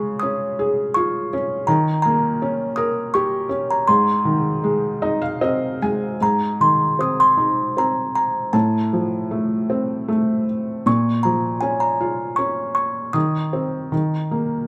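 A moderate studio room reverb surrounds this intimate live take, an innocent, gentle lullaby cut from a longer piece, swaying in 3/4 at 78 BPM with uneven, rubato beats. A close-miked, tinkling music box carries the delicate melody up front throughout, dry and full in a high register, while a felt-muted upright piano supplies soft accompaniment with short sustain and audible action noise. The piano adds brief fills at 4.6 and 14.3 seconds as the harmony drifts from Db through Ab and Bbm to a closing Eb5.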